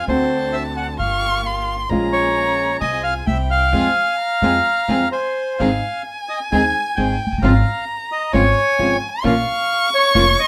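A reedy, dark bandoneon carries the melody up front in this passionate, sultry tango, cut from a longer piece, at 132 BPM in 4/4 with a rubato feel, moving from F minor to Ab major at 5.6 s. A close, bowed solo violin adds an expressive second line with vibrato and portamento. A small, fingerpicked nylon-string guitar and a woody, thumpy pizzicato upright bass sit beneath, while a rich chamber string section plays focused stabs in the background, the band striking an accent from 3.7 s until the key change, in a moderate club reverb.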